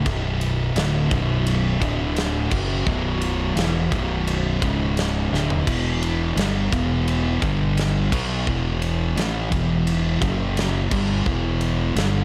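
Opening at once on a double-tracked fuzz guitar riff over a growling overdriven fingered bass, this ominous, sludgy stoner and doom metal passage moves through heavy power chords in a straight 4/4 while a punchy, up-front rock drum kit in a big room crashes and rides along, with a brief drum fill at 5.3 seconds, all cut from a longer piece.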